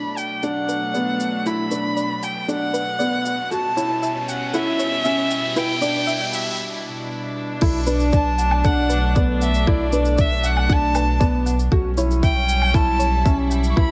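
A nasal, vibrato-laden solo violin carries the melody from the opening moment over a reedy chamber string section holding sustained chords with a gut-string, period-style tone, while an electronic riser sounds beneath them in this intimate, melancholic piano and strings electronica piece in B minor at 117 BPM. Almost at once a dark, round pluck begins its quiet arpeggios in the background, alongside a tape-toned electronic shaker, crash cymbal and woodblock, and a felt-muted upright piano plays a mellow riff in which the soft knock of its action can be heard. Filter sweeps open up the strings, violin and pluck through the build-up, and a brief break from 6.6 s clears the air before the drop. At 7.6 s a tight electronic kick and a deep, round sine sub bass with tube saturation arrive up front, and the string chords, pluck and bass all pump against the kick. Digital delay trails the violin, pluck and piano, light studio reverb gives the mix a gentle sense of room, and the harmony circles Bm7, A7/B and Em7/B in this short excerpt cut from a longer piece.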